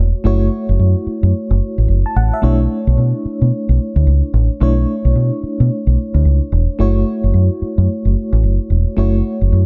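Bouncy and punchy, this short cut from a longer new jack swing R&B piece rides a swung sixteenth-note groove over F#m7 and Bm11 chords. A deep dub fingered electric bass sits up front, round and foam-muted with a direct, amped tone, while an FM electric piano plays accompaniment underneath at a lower level, its vintage tremolo warbling through fast-attack, decaying notes with a noise layer. Light reverb and a small room ambience surround the dark, warm production.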